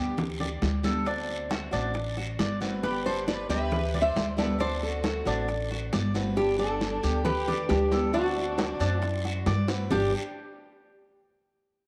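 A straight 4/4 son and guajira groove at 136 BPM in G major, relaxed and danceable, with a woody, dark pizzicato upright bass up front, ringing hard-hand congas, very quiet low-tuned bongos and a raspy guiro under a bright, metallic Cuban tres playing arpeggios and a jumbo picked steel-string guitar alternating between G and D7, before a full-bodied fingerpicked nylon-string melody with tape echo and finger squeak enters at 2.8 seconds alongside a smooth, vibrato-laden violin section in the background, all bathed in a wet spring reverb, with a drum fill at 9.7 seconds leading into a new section on G5 at 9.9 seconds.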